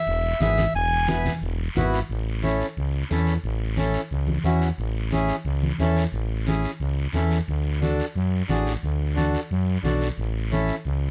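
A straight, danceable 4/4 cumbia groove drives this festive Latin excerpt, as low-tuned congas and a raspy guiro back a growling, thick FM bass and a reedy, boxy accordion, while a clear, classical-style clarinet sings a brief solo phrase that ends at 1.4 seconds, in a close, dry and detailed recording.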